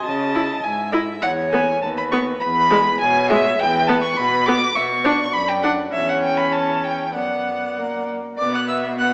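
A quick classical-period movement for string quartet, cut from a longer piece, with a stormy, restless mood at 101 BPM in 2/4, played with a rubato feel and settling into B minor from 3.6 s. The first violin carries the melody with a rich, vibrato-laden tone that sounds distant, while the second violin sits up front with a warm, smooth second line, its level standing above the other parts. The viola enters at 0.3 s with clear, close accompaniment, and the cello anchors the bass with a rich, even bowed sound, each part played by a single player with vibrato. The harmony moves from C#m through E and B/D# before turning toward Bm, Em6 and an F# chord, closing on a rootless Gmaj13/B. A wet recital hall reverb surrounds the quartet, and the whole recording carries the worn character of old cassette tape, with warbling pitch drift and the sound of a small speaker.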